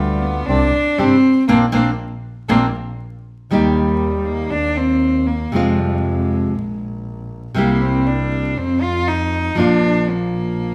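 A warm, intimate bowed cello sings up front with light vibrato and a soft, airy sul tasto tone over a rich, biting bowed double bass and dark, reedy bandoneon stabs that sit in the background until 2.7 seconds, while a fingerpicked nylon-string guitar with audible finger squeak joins at 1.0 seconds, all in a passionate, dramatic rubato tango fragment cut from a longer piece, set in a moderate large-studio reverb under a layer of vinyl crackle.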